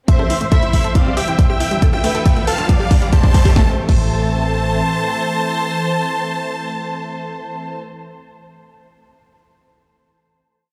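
A huge, detuned supersaw lead carries a repeating riff in thirds and sixths through this euphoric, soaring uplifting trance piece, pumping against the kick under a low-pass filter sweep and dub echo across the build from 0.1 to 3.6 seconds. Beneath it, a bright square-wave unison lead doubles the anthem in the background, while a distant, smooth symphonic violin section plays the riff in octaves with vibrato, and a thick, airy pad holds sustained chords through chorus and phaser. A warbling, vintage-toned unison pluck runs a three-step arpeggio loop drifting against the bar, its filter also sweeping through the build, and a funky sawtooth bass rolls sixteenth notes in the background until 4.8 seconds. The punchy four-on-the-floor kick sits up front with a house kit of cracking snare, hats, congas and crash, a drum fill running from 1.8 to 3.6 seconds alongside a very quiet riser. The drums and arpeggio stop at 4.0 seconds and the bass at 4.8, leaving the leads, violins and pad to ring out on a final A minor chord in a stone-room reverb.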